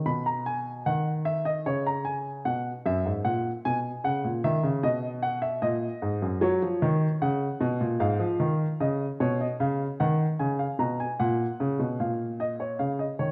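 A warm, natural baby grand piano sits up front and plays solo through this serious, driving baroque-style two-part invention in straight 4/4, its chords moving from B through C#m7 and G#m toward a rootless A#m/C# at 12.8 seconds. A moderate recital hall reverb surrounds it, and a worn cassette tape adds a warbly pitch drift to this brief cut from a longer piece.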